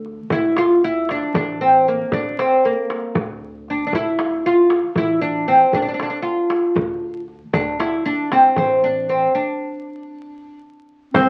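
A dark, thumpy upright bass with gut strings opens this longing, soulful Turkish makam excerpt in 7/8. It is soon joined by a clay-shell darbuka struck with hard hands and an up-front fretless oud with a woody, double-string tone. After a break beginning at 9.3 seconds, a mellow classical clarinet and a twangy, fingerpicked banjo enter at 11.1 seconds, followed by the very quiet, dark jingles of a riq, all heard through the crackle and light reverb of a very old 78 rpm record.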